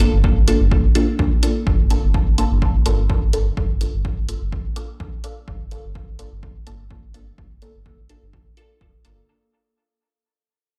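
Hazy and deep, this short dub techno passage is cut from a longer piece and moves at 126 BPM in 4/4 with a light 16th-note swing, resting in G minor on a single Gm9 chord and fading out across its 9.3 seconds. A filtered dub chord stab, muted and detuned with a plucky filter snap and short decay, runs from the start through phaser, sidechain pumping and dub echo. Beneath it a round analog bass, dark and sustained with a fast attack, pumps with the sidechain in its low register. An electronic kick drum enters at 0.2 seconds, punchy and tape-tinged, sitting up front with studio reverb, while a layered, overdriven electronic hi-hat sits softly in the background with its own reverb. The whole track sounds as if played on a big sound system in a bare room, bathed in a large studio reverb with a digital ambience.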